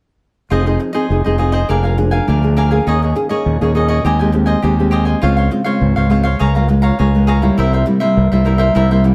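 A moderate studio reverb gives this short excerpt a lively yet bittersweet glow, a samba-choro groove in F minor moving at 102 BPM in a straight 4/4. A crisp, picked cavaquinho and a full-bodied, fingerpicked nylon-string guitar share the accompaniment, while a growling, overdriven fingered electric bass sits punchy and up front beneath them. All three play together from 0.5 to 9.1 seconds over a progression that starts on Fm7, passes through Dbmaj7, and arrives at C7.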